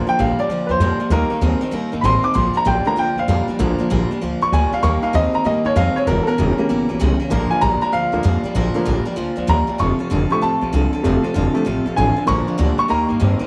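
Rollicking and retro, this swung rockabilly clip in Bb major races along at 194 BPM, with a clear, intimate upright piano taking the solo from start to finish, its short sustain and audible action noise kept up front. Beneath it, a thumpy, dark gut-string upright bass plucks the low end, a twangy, slightly broken-up electric guitar through a small old amp plays the riff, and a bright, full-bodied dreadnought acoustic guitar adds picked accompaniment. A moderate echo-chamber reverb and small-room ambience frame the changes, which move from Bb and Eb through an Edim7 to F and back home.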